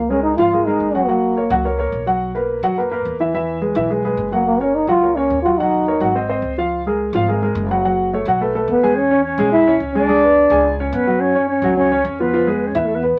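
Sophisticated and sunny, this brisk 213 BPM jazz fragment sets a veiled, bucket-muted trombone melody with vibrato and scooped notes in phrases over an intimate, up-front concert grand piano with audible action noise and deep bass, a woody, growly pizzicato upright bass, and light reverb, while a pure, straight-toned flute joins with a second line from 8.7 s as the chords turn toward an Fdim at 12.3 s.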